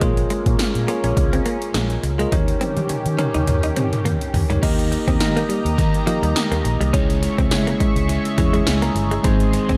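Punchy, up-front electronic pad drums drive this glossy, romantic 1980s-style pop excerpt, pairing a firm kick and metallic hi-hats with a gated-reverb snare and toms, tambourine and crash cymbal, all carrying a light sixteenth-note swing. Beneath them a dark, foam-muted fingered bass sits round and amped, while a bell-like tine electric piano rings out bright chords over a swirling, warbling analog pad whose detuned sawtooth tones are treated with phaser and chorus. A compressed, direct-recorded clean guitar picks a riff in the background, bathed in lush chorus and tape echo. The drums play a fill from 2.3 seconds, and at 4.6 seconds the harmony shifts as a crunchy overdriven guitar joins further back with analog chorus. The progression moves from Bbm7 and Eb7 to Eb, Dbm and Ab, with the electric piano adding a short fill at 8.1 seconds, all set in a light digital ambience.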